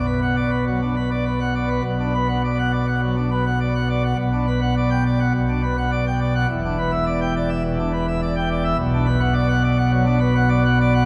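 In a straight 4/4 at 104 BPM, this dramatic, stormy classical organ toccata excerpt in B minor features a solo pipe organ on a full, brilliant baroque plenum with mixtures, spanning E1 to G5 and set up front, moving through Bm, Gmaj7/B and Em7 before returning to Bm at 8.8 seconds, all carried on a wet cathedral reverb heard from further back in the room.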